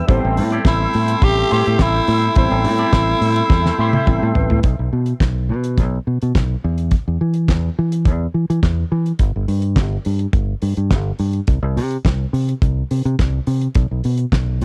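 A raspy, gritty tenor saxophone leads this sultry, danceable disco excerpt over an Am7 chord, backed by a worn, slightly out-of-tune tine electric piano, a lightly overdriven tonewheel organ with key click and slow rotary speaker, and a bright semi-hollow electric guitar with wah and spring reverb in the background, all anchored from the start by the dark, round fingered bass and the dry, fat-snared 70s drum kit with handclaps. After drum and electric piano fills from 3.5 seconds, the bass and drums carry on alone from 4.6 to 14.6 seconds in the small-room, lo-fi character of a home cassette recording.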